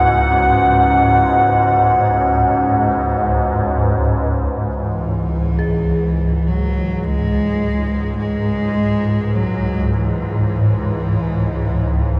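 Unsettling and cavernous, this dark ambient drone piece drifts in free time in C# minor, cut from a longer work. A swarming, warbling low drone sits up front throughout, its detuned, ring-modulated tone carrying its own built-in reverb, and a filter sweep moves across it from 4.7 seconds onward. Over it, a deep, moody analog pad holds sustained C#m chords with slow attacks and a chorus sheen, dropping out at 4.7 seconds. An eerie, inharmonic synth bell plays very quiet arpeggios through the whole excerpt, colored by chorus and phaser. At 4.8 seconds a single bowed cello takes up an intimate melody up close, played sul tasto with light vibrato and trailed by delay. The whole recording is bathed in a long cathedral reverb and has the grain of cassette tape.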